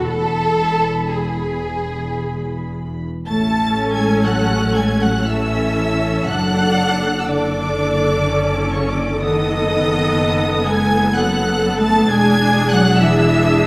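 A wet scoring-stage reverb surrounds this tender, lyrical fragment of a slow romantic movement for string orchestra in A major, unfolding in a rubato 3/4 at around 54-65 BPM. High, rich violins sing the melody with vibrato over a second violin line with a focused, smooth top, while violas give a clear, up-front accompaniment and woody cellos join smooth, close double basses on the bass. The opening E chord moves to A at 3.3 s, then drifts through D/F# and B7/F# toward E7 at 12.1 s.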